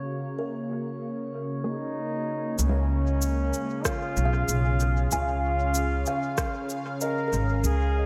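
A dreamy, reverb-soaked haze opens this spacious ambient dub excerpt at 95 BPM in Db mixolydian, where a bright, detuned sawtooth pad with chorus and a drifting glassy sine texture are joined by mellow kalimba arpeggios with dub echo, a distant, roomy trombone melody from 1.6 s, and a brief dark phaser-treated chord stab. From 2.6 s a thumpy, woody upright bass and a tape-toned electronic shaker and rim click with echo arrive, followed at 3.9 s by a deep, up-front electronic kick.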